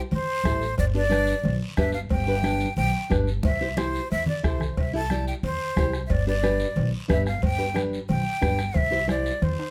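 A dark, fingerpicked nylon-string guitar with a classical touch opens this festive, sunny cumbia excerpt, sitting up front in C major at 181 BPM with a straight 4/4 feel. Almost at once a breathy jazz flute takes the melody, expressive and up front with vibrato, a soft attack and lifted highs, while a woody, thumpy pizzicato upright bass holds the low end. Congas struck with hard hands on a thick skin sit in the background beside ringing, compressed and saturated cowbell and timbales, and a raspy guiro adds texture, with a soft-beater bombo joining at 0.5 seconds. A drum fill from 3.4 to 4.8 seconds marks the middle of a simple movement between C and G chords. Close, detailed microphones and light reverb give the performance an intimate, clear sound.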